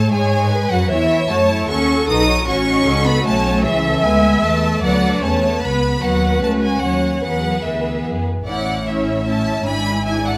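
A string orchestra opens together in a quick classical-period movement at 152 BPM in 3/4, with a graceful, cheerful lilt and a rubato feel, settling into A major from 3.6 s. Two chamber violin sections lead, one carrying an intense, vibrato-rich melody high above while the other adds a focused, more distant second line. Beneath them, lush violas, smooth cellos and an up-front double bass section fill out the accompaniment and bass, all heard in a moderate scoring-stage reverb in this passage cut from a longer piece.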